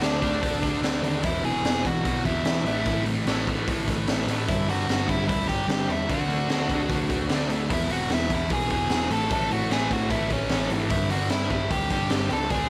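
A straight 4/4 pulse at 149 BPM drives this upbeat, rebellious punk rock excerpt, where a raw garage drum kit with a punchy kick and high-tuned snare sits up front in a muffled, lo-fi stone-room sound, a sludgy, double-tracked distorted guitar plays a riff over D5, E, A5 and G5 chords, an amped, overdriven picked bass adds weight, and a dark, smooth overdriven lead guitar carries the melody, all in a dry mix with little reverb.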